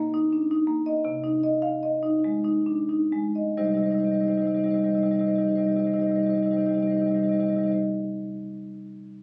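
Flowing and hypnotic, this short cut from a longer contemporary classical piece for solo marimba drifts in 6/8 at a rubato 42-55 BPM in C minor, slowing down over the first 3.6 seconds as Cm9 gives way to a rootless Fm7 over C before settling on C minor. Played with medium mallets on rosewood bars across a range from C3 to F5, the marimba sounds woody and up front, with a vintage, band-limited character. It was captured on a phone in the room with compression, and the marimba rings until 7.8 seconds.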